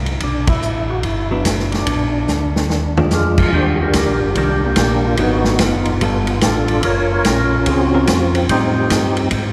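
Soul jazz organ trio at a brisk 145 BPM in 4/4, swinging its eighth notes with a greasy feel, heard here as a short section cut from a longer piece. A round, mellow tonewheel organ carries the bass line through chorus vibrato and a slow rotary speaker, while a second, fatter organ takes the melody up front with lightly overdriven bite, key click and percussive attack. A vintage acoustic drum kit sits forward with a punchy kick, dark cymbals and a rolled-off top. The band hits an accent at 0.4 seconds, and the drums play a fill just before the music settles into Eb major at 3.5 seconds. Tucked in the background, a clean, compressed hollow-body electric guitar adds picked accompaniment from 1.3 to 8.7 seconds. The harmony moves through lush extended chords such as Ebmaj7, G9 and Gbmaj7#11, and the whole band is bathed in a long, wet cathedral reverb that gives the groove a hall-like glow.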